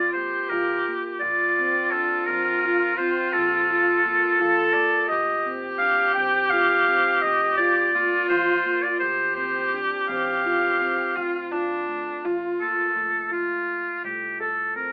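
Contemporary instrumental chamber music in 11/8, moving at 169 BPM counted in eighths with a straight feel, in F mixolydian; this shimmering, hopeful passage is cut from a longer piece. A clear oboe carries the melody up front in classical style, with light vibrato and a distant, roomy tone. Alongside it, a single bowed viola, focused and close, sings a second line with vibrato until 13.0 seconds. A handpan joins at 0.2 seconds with mellow, ringing arpeggios of nitrided steel under soft fingertips, its sound vintage and band-limited, while a woody, dark pizzicato upright bass stays in the background. The harmony moves from Fsus4 through Bbmaj9, F5 and Dm7 before settling on F for a short closing section, and the recording carries light reverb and a telephone-like tone.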